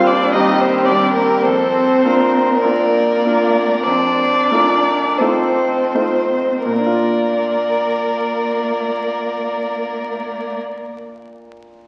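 A bowed violin melody, clear and close with smooth, even vibrato, opens this slow, rubato classical movement for piano quartet in Bb major, joined from the start by a focused second violin, a distant, expressive cello with portamento, and an open, up-front concert grand piano with deep bass. The serene, warm mood holds as the tempo eases across the first 6.7 seconds, moving from Cm/Eb through F7 to arrive on Bb. The strings stop at 10.6 seconds, and the piano carries on alone until 11.9, all heard through a wet scoring-stage reverb and the crackle of a very old 78 rpm record.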